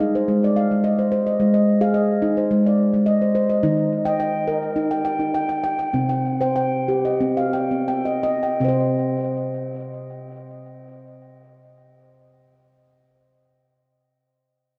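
Gentle and meditative, this short world-music excerpt features a lone handpan, its ringing nitrided-steel tones struck with the fingertips and placed up front. Tape echo trails each note into a wet concert-hall reverb as the harmony moves from Ab through Eb to C minor. The pulse slows between 3.6 and 8.6 seconds before a brief closing passage settles on a bare C chord.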